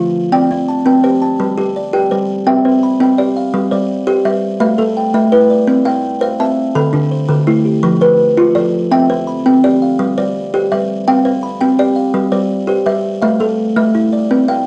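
Warm and rippling, this southern African traditional excerpt in 12/8 pairs a buzzing kalimba, its solid-board tone ringing close and dry, with a hollow, woody kalimba whose bright, airy thumbnail plucks sit up front, both spinning an interlocking mbira-style cycle of arpeggios through a cassette-tape haze and light studio reverb over a home recording that circles mostly between C and G.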